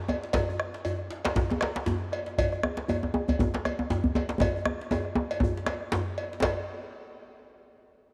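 A cut from a longer West African traditional drum ensemble piece opens on a deep, dark bombo, a metallic cowbell and a medium-tuned djembe with metal rattles struck with hard hands, joined at 0.2 seconds by a second, up-front djembe played with soft hands, all moving in a powerful, earthy swung 4/4 under a moderate plate reverb, with a drum fill from 4.4 to 6.4 seconds leading into a new section.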